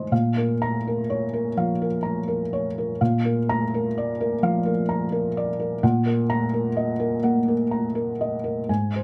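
Dark production and a touch of light reverb frame a felt-muted upright piano that sits up front, its mellow, intimate tone carrying audible action noise. This 9-second fragment of a longer neoclassical minimalist piece is a melancholic, reflective solo in a rubato 4/4, ranging from Ab2 to C6. The harmony moves from Bbm to Bb at 3.0 s and then to Ebm/Bb at 5.8 s.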